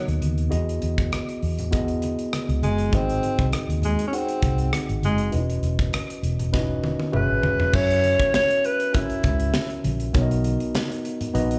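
Lush 1970s-style soul with a silky, bittersweet mood, heard as a short cut from a longer piece played live through a club PA with the room's ambience around it. An up-front alto saxophone carries the melody with vibrato, scooped notes and a smooth top, singing in a jazz style until 9.8 seconds over a mellow tine electric piano, both touched by slapback echo, while a dark, foam-muted fingered bass sits round and punchy beneath. A polished drum kit with a high-tuned snare and punchy kick plays a fill from 6.5 to 7.7 seconds into the second section, and thick-skinned, low-tuned congas murmur in the background, all on a lightly swung groove moving through rich chords from Bmaj7 back to Bmaj7.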